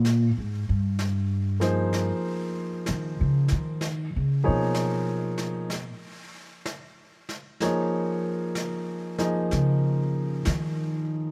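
A melancholic, intimate jazz ballad at a slow, swung 63 BPM opens on a woody pizzicato upright bass solo, up front throughout, over a clear, deep-voiced concert grand piano accompanying through Abmaj7 and Fm7b5, a chordless moment at 5.7 s, and Ebsus2 at 7.6 s, while a quiet brushed snare sits in a studio room beneath light reverb in this short cut from a longer piece.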